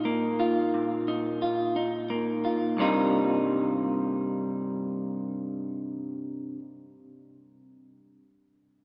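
Bathed in a wet cathedral reverb with a 4.6-second tail, this melancholic, cinematic rock fragment in C minor moves at 58 BPM in a straight 6/8, as an up-front electric guitar through a small old amp, slightly broken-up and lo-fi, picks arpeggios from 0.0 to 6.6 seconds, shifting from a Bbsus4 to a Cm7 at 2.8 seconds.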